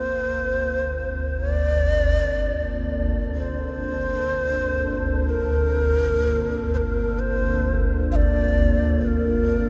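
A dark ambient drone excerpt in free time, cavernous and desolate, where a breathy, end-blown bamboo shakuhachi carries an expressive, vibrato-laden melody with tape echo up front, over a deep, mellow, detuned pad that fades in with chorus and sustained chords, and a swarming, warbling low drone that enters at 0.1 seconds under a filter sweep, all bathed in a huge reverb.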